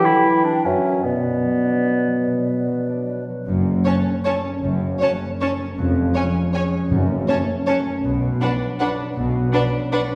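A bright, up-front clarinet, a mellow, hollow flute, a solo bassoon and a ringing, fingerpicked concert harp open this sweeping, dark orchestral ballroom waltz excerpt together in rubato 3/4, the harp's arpeggios running through the whole passage. From 3.5 s the winds give way to strings: a woody cello section and a lush double bass section with portamento take the bass, a close studio violin section and a focused viola section fill the inner lines, and a symphonic violin section carries the vibrato-rich melody on top. A very quiet timpani note with hard mallets lands at 6.9 s, all set in the reverberant air of a concert hall.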